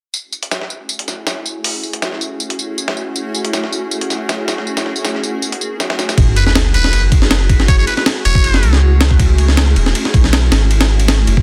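A dusty, gritty sampler kit of hi-hat, snare and tambourine, filtered thin and set in a large room, opens this frenetic, dark drum and bass excerpt before a drop at 6.2 seconds brings a pitched-up breakbeat kit with a thumpy kick and high-tuned snare, a deep, round sub bass with tube saturation, a very quiet electronic sub drop, and a brief raspy, growling muted trumpet solo with scooped notes and dub echo, all in a dense, heavily limited, dry mix.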